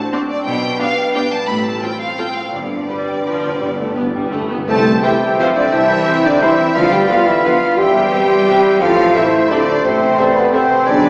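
A French horn section, placed up front, carries sustained chords through the second half of this sweeping, elegant orchestral ballroom waltz in C major. It enters at 4.7 seconds alongside flute, clarinet, oboe, bassoon and tuba, with a very quiet trombone section following shortly after. The music moves in 3/4 at 173 BPM with uneven beats and rubato. It opens with a clear, focused violin section on the melody, a second, richer violin section on a counter-line, expressive violas in the background, and a lush cello section paired with dark, smooth-topped double basses on the bass. A ringing harp spells out arpeggios from the start, and timpani with calf heads and medium mallets add a close, dry fill beginning at 2.5 seconds. Among the winds, a pure flute, a lightly vibrato oboe and a mellow clarinet trace second lines, while the bassoon fills in accompaniment and a punchy tuba adds to the bass. 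The strings play with vibrato, with portamento in the violas and basses, and the recording sits in a wet scoring-stage reverb heard from further back, with a small-speaker sound, cut from a longer piece.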